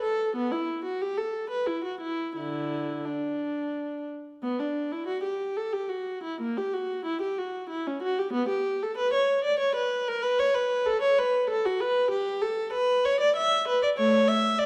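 Classical baroque-style suite movement in 3/4 for a single bowed viola, grave and solemn, played with flexible rubato and light vibrato, its smooth, even tone sitting close and up front in a moderate recital-hall reverb with a dark, warm production, heard as a brief 14.7-second passage cut from a longer piece.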